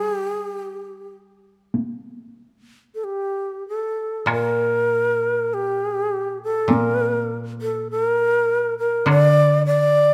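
Rubato and unhurried at 46-53 BPM in 4/4, this austere, meditative fragment of Japanese chamber music in G minor sets an airy, expressive bamboo shakuhachi melody with vibrato and tongued notes up front over a dry, woody koto played with fingerpicks in its low register, while a vintage, band-limited taiko ensemble struck with heavy sticks enters at 1.7 seconds and falls away at 9.3 seconds, all within a moderate scoring-stage reverb.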